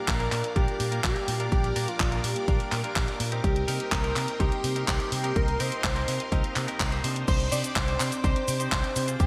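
Melodramatic and nostalgic, this 125 BPM italo disco piece in C minor sets a thick, detuned sawtooth unison lead with digital delay over lush, chorused string-machine chords in the background, twangy clean stabs from a direct-recorded electric guitar, a growly tube-saturated fingered bass, a punchy electronic kick and an up-front house kit of hi-hat, handclaps, cabasa and crash with gated reverb, as the harmony moves from Bb to Cm7 and then to Cmadd9 at 7.3 s within a bright 1980s-style digital production washed in hall reverb.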